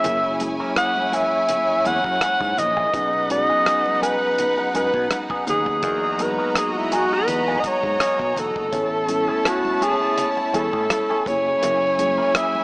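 A breathy alto saxophone with subtone, vibrato and scooped notes carries the melody up front from the start of this lush, smooth 1970s-style soul excerpt in B major at 83 BPM, with a gentle 16th-note swing, while a close, bowed studio violin section adds a silky second line. A mellow tine electric piano plays clean accompaniment, a dark, slightly broken-up electric guitar riff with wah and spring reverb sits in the background, and a growly fingered bass joins a dry, dark drum kit with a tight kick, hi-hat and rim click, plus ringing congas far back. The harmony moves from F#9 through B6, Emaj9#11 and Amaj7 before returning to F#9 at 11.3 seconds, and light reverb, a small room ambience and a small-speaker tone give the whole a warm, intimate sound.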